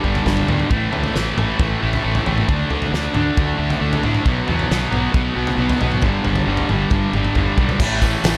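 A straight 4/4 pulse at 135 BPM drives this short, dark and brooding cut from a longer quiet-loud alternative rock piece. A thick, double-tracked fuzz guitar sits up front with a bright, picked riff colored by distortion and slapback echo, moving through power chords on G, A, D and B. Beneath it, a fingered electric bass adds a growly, overdriven low end. A loose indie drum kit with a punchy kick, fat snare, dark cymbals, hi-hat and toms plays throughout, with a pumping room sound and a drum fill from 6.9 to 7.8 seconds. Recital hall reverb gives the whole a big arena sound; guitar and bass run the full 8.4 seconds, and the drums stop just short at 8.3 seconds.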